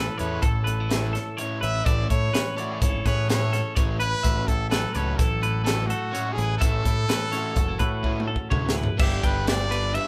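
In a straight 5/4 at 126 BPM in A major, this bright, wistful math rock and midwest emo excerpt sets a brilliant, pop-style trumpet melody over a twangy, compressed clean electric guitar accompaniment with phaser, dark fingered clean guitar arpeggios and a double-tracked crunchy overdriven guitar riff in the background, a growling overdriven picked bass, and an up-front, crisp fusion kit with dark cymbals, a high-tuned snare and a punchy kick, whose fill at 8.0 s leads the harmony from Amaj7, F#m7/A and A6 to G6 at 9.0 s, as the band plays live together in a moderate studio reverb.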